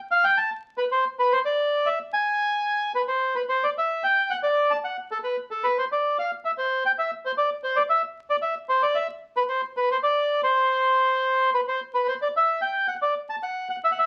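Vinyl crackle from a very old 78 rpm record opens this short tango fragment, and a solo bandoneon enters at 0.1 s, playing alone until 14.1 s. The mood is dramatic and passionate, with a rubato feel around 112 BPM in 4/4 and tuning set slightly low at A4 = 439 Hz. Sitting up front, the bandoneon sounds reedy and dark, with a boxy, small-room character and a warm body as it moves between A4 and A5. A wet studio reverb with a short 0.5-second decay surrounds the instrument, while the surface noise of the old disc colors the whole recording. The opening phrase returns at 11.8 s before the fragment breaks off, leaving the sense of a longer piece cut short.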